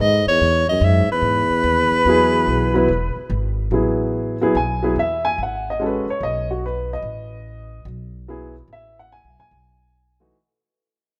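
Spiritual and hypnotic, this modal jazz piece swings at 145 BPM in 4/4 over an E chord, with a clear, up-front soprano saxophone carrying the melody with vibrato and scooped notes while a breathy, whispered trombone adds a mellow second line until 3.3 seconds. A woody pizzicato upright bass with steel strings plays throughout, and from 2.1 seconds a warm, vintage upright piano joins as accompaniment, its long sustain and audible action noise sitting close in the mix. A moderate plate reverb lends space to the rough home demo sound, and the music fades out from 3.7 seconds.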